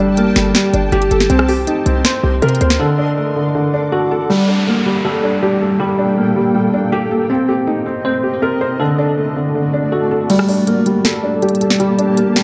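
Built on a felt-muted upright piano, soft and intimate with its action noise audible, this dark, menacing half-time trap excerpt, cut from a longer piece, sets a brooding hip hop mood. A tine electric piano spins arpeggios through chorus, filtering and delay, sounding warm and clean as if through a combo amp, while a granular cloud pad hangs behind in blurred, detuned, evolving chords bathed in its own reverb. The opening bars bring a trap drum kit with a sharp snare, crisp hats, rim clicks and a crash, along with a short, punchy 808-style bass whose sine tone and noise layer decay quickly, both set up front before dropping out at 2.8 seconds for a brief break. From 4.3 seconds the keys and pad carry on by themselves, joined by an electronic downlifter until 7.3 seconds, as the harmony cycles again through minor add-nine, minor-seventh and major chords. The drums return at 10.3 seconds with the kick muted for the final stretch, within a dark, lightly reverberant mix.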